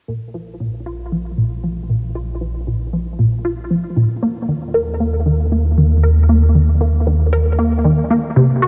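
A straight 4/4 pulse at 116 BPM drives this mysterious, cosmic excerpt of ambient, sequencer-driven space music, where a juicy, squelchy resonant blip pluck plays a bright riff through phaser, analog chorus and analog delay over a fat, thick analog bass, both fading in together from 0.1 to 8.7 seconds as the chords move from B-flat to E-flat at 4.2 seconds, all bathed in a huge ambient reverb and a cassette-tape grain.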